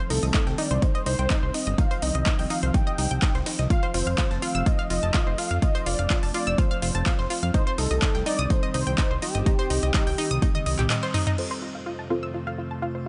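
A dry mix with a dulled top end and a faint mains hum opens this euphoric, uplifting progressive house passage, cut from a longer piece, moving at 125 BPM in a straight 4/4 in F mixolydian over a Cm to F progression. An overdriven, punchy electronic kick sits up front, joined by an overdriven big-room dance kit with handclaps, its metallic hats, crash and toms pumping against the sidechain, while a gritty, very quiet breakbeat sampler kit adds hi-hat and a high-tuned snare. A fat, detuned sawtooth bass with tube saturation drives the low end, and a round, bright analog pluck spins chorused arpeggios through dub echo above an evolving, morphing wavetable pad that drifts in the background with phaser and its own reverb. A thick, bold unison lead with sub octave, vibrato and a dark, tape-coloured tone carries the melody, also feeding dub echo, with every melodic part breathing to the sidechain. 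A drum fill runs from 10.4 to 11.4 seconds, with a band accent at 10.9 seconds, and from 11.4 seconds a soft, warbling, vintage chord stab enters with chorus and echo as filter sweeps move across both the stab and the pluck.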